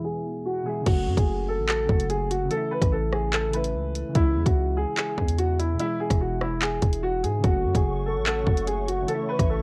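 Cold and menacing, this half-time drill hip hop clip opens with a dark, woody upright piano melody over soft, round electric-piano-like synth keys and a hollow, flute-like pad, before a hard-hitting sine 808 bass and an up-front electronic drill kit with a hard-clipped kick, bright hi-hats, handclaps, rim clicks and crash drop in at 0.9 seconds, the airy detuned pad returning at 7.4 seconds, all framed by light reverb and a home-recorded, low-passed cassette haze.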